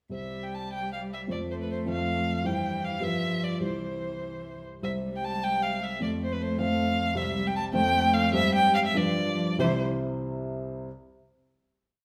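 In a rubato 6/8 at 91-106 BPM, counted in dotted quarters, this quick, spirited and graceful classical-period piano trio movement in C major unfolds as a complete short piece. Up front, a rich, focused solo violin sings the melody with vibrato, while a warm, expressive cello adds a close second line with soft attacks, portamento, tremolo and sustained chords in the rhythm of the tune, over dark, mellow block chords from the grand piano. The wet recital hall reverb surrounds the trio as the music slows from 6.6 s, the strings stop at 9.8 s, and the piano carries the final chord to 10.9 s.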